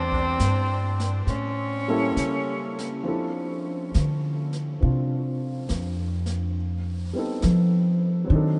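A vast, echoing reverb wraps this short fragment of a melancholic, smoky jazz ballad in D minor, moving at a slow 68 BPM in 4/4 with a swung eighth-note feel. A clear, forceful tenor saxophone opens with a brief, up-front phrase full of vibrato and scooped notes, ending by 2.8 seconds, over a woody, thumpy upright bass and a soft brushed drum kit with a punchy kick. A natural-sounding baby grand piano with short sustain enters at 1.9 seconds, and from 3.0 seconds the gut-string bass takes a plucked solo over Dm7 and Am7b5 harmony.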